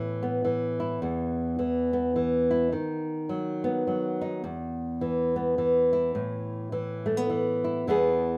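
A lilting 3/4 at 105 BPM with a light swing on the eighths carries this gentle, peaceful folk excerpt, where a lone fingerpicked nylon-string guitar, full-bodied and up front with audible finger squeak and light reverb, moves from Asus2 through E5, B/D# and back to Asus2 before settling on E at 7.9 seconds.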